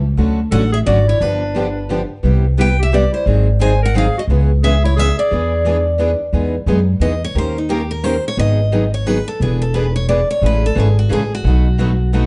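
A woody, thumpy pizzicato upright bass opens this charming, playful excerpt of 3/4 jazz manouche at 176 BPM with a swung feel, quickly joined by two bright picked steel-string acoustic guitars in accompaniment (two of the three guitars have fresh strings and finger squeak) and a lead guitar melody. A vibrato-laden, scooped jazz clarinet adds a present second line until 5.9 s, and at 6.3 s the guitar takes a solo as the music settles into E major, all within a dark production with light reverb.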